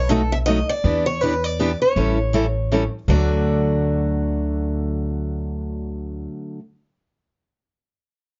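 A bright, boxy picked steel-string acoustic guitar carries the melody up front in this short excerpt of playful acoustic string swing in the jazz manouche style, moving at 160 BPM in 3/4 with a swung eighth-note feel in D major. Beneath it, a second picked steel-string acoustic guitar plays accompaniment from 0.1 seconds, its bright concert-guitar tone marked by audible finger squeak. A pizzicato upright bass on gut strings anchors the low end with a woody, thumpy sound, sitting just as close to the listener as the guitars. The harmony travels from B7 through Em7 and A7 before landing on D at 3.1 seconds, marking the shift from the opening section into the next. A small room's moderate reverb surrounds the trio, and the production stays dark overall, rounding off the top end.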